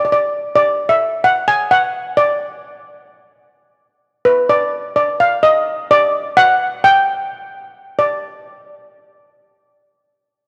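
A straight 4/4 calypso groove moves along at 129 BPM, carefree and bouncy, in this short excerpt cut from a longer piece. A double seconds steel pan played with hard rubber sticks carries it alone, sitting up front with a dark, shimmering tone between B4 and Ab5 until it stops at 8.2 seconds. A lush hall reverb surrounds it, and the home cassette recording adds a tape character.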